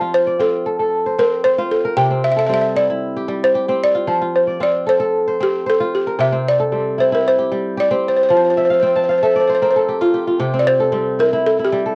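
Hypnotic and flowing, this short cut from a longer West African traditional piece pairs a woody, buzzing balafon played with rubber mallets, carrying the melody up front, with a crisp, ringing, fingerpicked kora weaving arpeggios over alternating F and C chords, the kora adding a fill at 8.6 seconds before the balafon takes a solo at 10.4 seconds, both parts carrying a cassette-tape character within a homemade recording's modest booth ambience.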